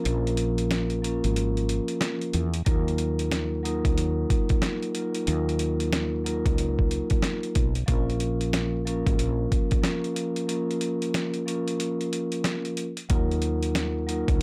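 Moody and tough, this boom-bap hip-hop excerpt sets a mellow, ringing soft-mallet vibraphone over a dark, round fretless electric bass and a gritty, pitched-down sampler-style drum kit with a thumpy kick and tape-warm grit, all three sitting up front in light reverb, with breaks at 0.0 and 10.5 seconds and a swung feel as the chords move between Bbm and Ebmadd9.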